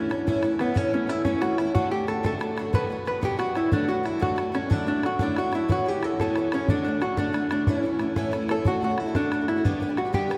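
A hollow-body electric jazz guitar carries a clean, compressed, up-front melody over a shimmering, octave-doubled twelve-string acoustic guitar whose woody, boxy tone has the dull edge of old strings, with a tight, damped bodhran joining close and dry at 0.1 seconds. This bright, rollicking Celtic jig moves at 122 BPM in 6/8, with slapback echo on the electric guitar, and the harmony circling through A, D and B minor before reaching G near the close. The whole short excerpt sits in a vast cathedral reverb that lets each phrase ring on.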